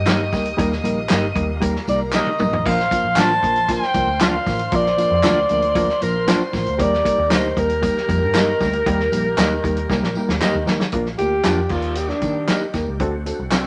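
An up-front alto saxophone with a smooth, vibrato-laden tone carries the melody from 1.9 s and takes a solo at 10.9 s in this joyful, danceable excerpt of uptempo 1960s-style soul. It is backed by a dry acoustic drum kit with a tight kick and fills, handclaps and tambourine in the background, a dark, round muted electric bass, a reedy, worn electric piano, clean fingered guitar stabs in spring reverb, a very quiet, gritty tonewheel organ with slow rotary speaker sustaining chords, and a soft-attack, floating bowed violin section playing a second line until 10.9 s.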